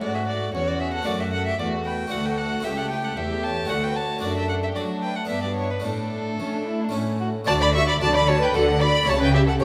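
A straight triple metre at 113 BPM drives this brilliant, festive passage, cut from a longer baroque-style concerto movement in D major with solo episodes. A solo violin with a gut-string, period-style tone and light vibrato carries the melody alongside a rich violin section, while a second, close-sounding violin section plays a supporting line beneath them. A distant, dark viola section and a round, Italian-style harpsichord sit in the background as accompaniment, and a dark cello section with a smooth top anchors the bass. At 7.5 s, a rich double bass section joins in the low register as the music settles on D. The harmony moves from F#m through D and G to A before returning home and closing on A7/C#, and the whole ensemble sounds through a wet recital hall reverb.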